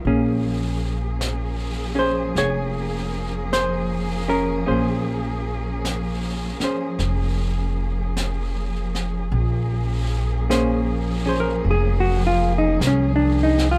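A slow 4/4 swing at 52 BPM, with eighth notes swung at 66%, carries this melancholic, intimate jazz ballad in B-flat minor, tuned to A4 = 441 Hz and opening on a Bbm9 chord. Up front, a clean, dark, fingered hollow-body electric guitar plays the accompaniment alongside a woody, thumpy upright bass plucked on gut strings. Behind them, a lush studio cello section holds bowed, sustained chords with vibrato and a smooth, focused top. A jazz kit played with brushes enters at 0.1 seconds, its high-tuned snare and hi-hat sounding natural in a small room and sitting low in the balance. Light reverb and a dusky, warm production frame the short passage, which moves into a new section at 9.3 seconds and is cut from a longer piece.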